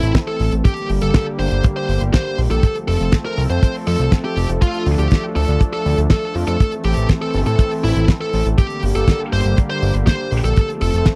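A tight, dry kick drum sits up front in this bittersweet, danceable italo disco excerpt, entering at 0.1 s and driving a straight 4/4 feel. Beside it, a fat, thick analog bass with tube saturation carries the low end, its sawtooth tone shaped by a filter sweep and notes that attack fast and then decay. A damped 70s kit adds mid-forward hi-hat and a fat snare, while a smooth, detuned sawtooth pad with chorus holds slow-blooming chords underneath. Over the top, a dark, high-gain electric guitar picks a distorted melody coloured by tape echo. The harmony moves through Am, Gm, F and Dm, and the whole excerpt has the close, dry sound of a 1970s studio.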